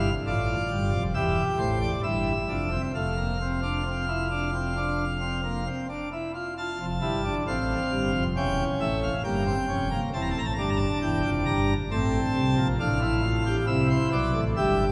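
Lively and elegant, this baroque-style classical fugue in three parts for solo pipe organ moves at a straight 67 BPM in F major, its brilliant, full plenum with mixtures sitting up front and ranging from E1 to Bb5, while a long, wet church reverb places the listener further back in the room, with a second section arriving at 6.6 seconds before this passage from a longer piece breaks off.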